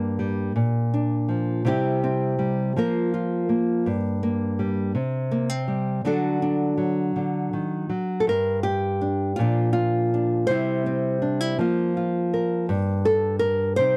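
Folk fingerstyle piece in 6/8 for solo nylon-string guitar, reflective and intimate, its small, fingerpicked tone sitting up front in a dry, close 1970s-style studio sound as it moves through minor-key chords, with a second phase beginning at 8.3 seconds, in this brief cut from a longer work.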